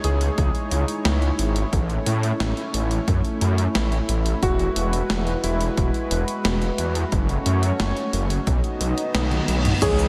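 Nostalgic and cinematic, this synthwave passage cut from a longer piece sets a vintage electric grand piano melody with tape echo in the background over a smooth, pumping analog pad, a thick detuned saw bass up front and a gated 80s drum machine joined by a punchy electronic kick at 0.4 s, in a dreamy mix soaked in huge reverb, before a reverse cymbal and drum fill at 9.1 s lead into a lush FM electric piano with soft pad layer playing phaser-tinged stabs and a very quiet second line from 9.8 s.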